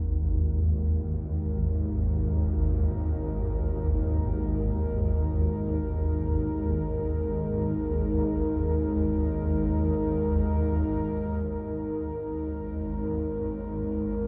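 Floating in free time, this desolate, dark ambient drone excerpt rests on a swarming, detuned low drone that blends sine and sawtooth tones with ring modulation and granular texture, its filter sweeping through the first 11.4 seconds. Above it, a bright, resonant sawtooth pad holds sustained chords with slow attacks, long releases and chorus, fading in over that same stretch before a shift at 11.4 seconds. Both parts sit up front within a huge ambient reverb that gives the tense, evolving sound a deep, enveloping space.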